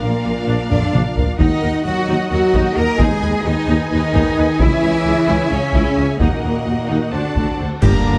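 Epic orchestral film score in a dramatic, relentless Eb phrygian at 262 BPM in 7/8, where a lush violin melody with vibrato rides over a bright second violin line, clear intense violas, sustained chords from a string section, a bright trombone section and very quiet dark French horns, a bass of smooth cellos, double basses and punchy dark tuba, taiko drums with heavy sticks entering at 0.7 seconds, and a cymbal swell, clash cymbals and concert bass drum joining at 4.6 seconds, all in a moderate scoring-stage reverb before a closing band accent at 7.8 seconds.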